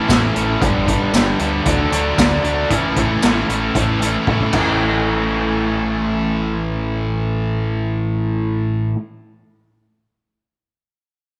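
A lightly reverberant, up-front classic rock recording, cut from a longer piece, with a driving, sunny mood in straight 4/4. A biting overdriven guitar and a bright, compressed distorted electric guitar both play picked riffs throughout, over a dark, round fingered electric bass, while a shimmering, octave-doubled twelve-string acoustic guitar is barely audible only in the first 0.6 seconds. A raw garage drum kit, gritty and saturated with a boomy kick, medium-tuned snare, hi-hat, crash and tambourine, drives the opening over a chord move from A through G and D back to A, then plays a fill from 4.3 seconds and drops out at 4.7 seconds as the guitars and bass carry the next section.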